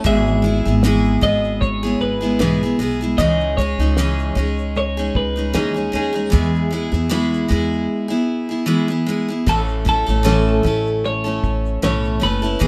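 A bright, full-bodied picked steel-string acoustic guitar sits up front beside a dry, cloth-damped drum kit with dark cymbals, a fat snare, a tight kick and a shaker in the background, as a woody, thumpy pizzicato upright bass and a clean, twangy, compressed twelve-string electric guitar melody join at 0.1 seconds in this heartfelt, sunny acoustic pop excerpt with a light swing and gentle reverb, moving through E/G#, C#madd9 and E before settling on A at 9.5 seconds.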